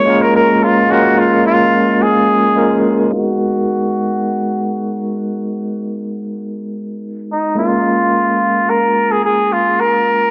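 A clear flugelhorn and an overdriven tine electric piano open this short chillout excerpt together, sitting up front at 108 BPM in a straight 4/4 feel. The flugelhorn carries the jazz-style solo melody with scooped notes and a vintage tone, trailed by a digital delay. Beneath it, the electric piano supplies barky, gritty accompaniment through a combo amp, pulsing with a medium tremolo. The harmony moves from A#m7 to G#m7 at 3.1 seconds, where a filter sweep begins and carries through to the end, before returning to A#m7 at 7.6 seconds. A lush hall reverb and the worn, warbling pitch drift of old cassette tape give the whole a warm, wistful mood.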